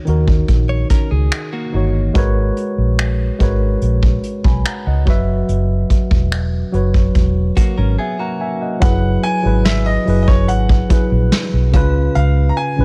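Longing and sensual, this slow contemporary R&B excerpt moves at 72 BPM in a straight 4/4, with a small room ambience wrapping the band. A worn, slightly out-of-tune tine electric piano carries the chords up front, lightly overdriven through its built-in speakers, over a dark, round, foam-muted fingered bass and a vintage brush kit with a punchy kick, medium-tuned snare, hi-hat and finger snaps, its top rolled off. A clean, compressed electric guitar, recorded direct, adds brief picked arpeggios with digital delay, first near the start and again around the break at 8.0 seconds. At 8.8 seconds a clear, natural grand piano takes up a high melody, and soon after a chiming, inharmonic FM synth rings faintly in the background, treated with ensemble chorus, phaser and delay. The harmony drifts from D#m7 through G#m11 and suspended F# chords before settling on C#7.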